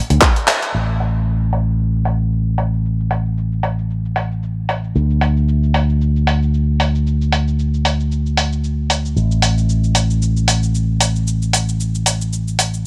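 The sound is dry and close, with barely any reverb, so both parts sit up front in this short nu-disco cut from a longer piece. It moves at 114 BPM in 4/4 with a 56% swing on the sixteenths, and its mood is groovy and sensual, tuned to A4 = 439 Hz. A fingered electric bass runs through an envelope filter, bright, amped and punchy, staying between A1 and D2 from 0.1 to 12.9 seconds. The dusty soul sampler-style drum kit is compressed, gritty and tape-warm, with handclaps, hi-hat and shaker, and low-pass filters shade its snare, hats and percussion. A drum fill and a band accent land at 0.5 seconds, and from 0.7 seconds to the end a filter sweep runs across the drums.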